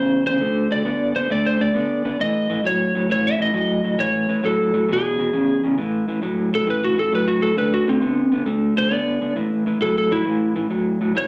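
An up-front electric slide guitar, slightly broken-up and compressed with slapback echo, carries the soulful melody and steps into a solo at 5.8 seconds in this swaggering blues excerpt, swung at 134 BPM in 4/4 and tuned to A4 = 436 Hz. Beneath it, a fingered electric guitar through a small old amp plays a lo-fi, warm riff in the low register, colored by tremolo and its own slapback echo. The sound is a live gig heard through the venue's PA, with moderate club reverb around both guitars.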